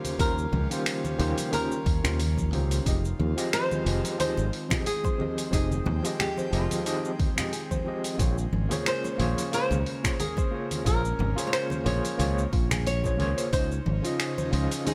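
Wistful and gently warm, this sunset chillout excerpt moves with a loose, swung sixteenth-note feel in 4/4. A dark, fingerpicked flamenco guitar carries the melody, touched with delay. Beneath it, an overdriven tine electric piano with a barky, gritty tone plays the accompaniment through a combo amp, shimmering with fast tremolo, vintage sampler grit and its own delay. An airy, breathy pad with chorus holds sustained chords in the background, and a soft, round pluck, dark and very quiet, adds arpeggios from 2.9 seconds. The rhythm section pairs a dusty, compressed soul sampler-style kit of cabasa, congas, finger snaps and hi-hat, overdriven and re-recorded in a small room, with a deep, layered electronic kick, ringing close-miked congas played with soft hands, and a bright, punchy fingered electric bass sitting up front. The harmony drifts from Eb13 to Fm7, Bbm9 and Dbmaj9 under a light reverb.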